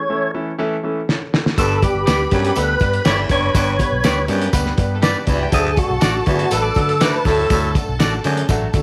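A straight 4/4 pulse at 122 BPM drives this danceable, uplifting fragment of 1960s-style soul, with a cloth-damped, thuddy drum kit entering with a short fill at 1.1 seconds. Its muffled, gritty sound sits up front beside a round, dark muted bass and a jingly tambourine in the background. A percussive tonewheel organ carries the melody from the start, lightly overdriven with key click, chorus vibrato and slow rotary speaker, over warm grand piano accompaniment as the chords move from A to G to D, while a raspy baritone saxophone riff, twangy clean guitar stabs, a smooth bowed violin section set back in the mix and a brief slightly broken-up guitar riff near 6.4 seconds fill out the small-room sound with light reverb.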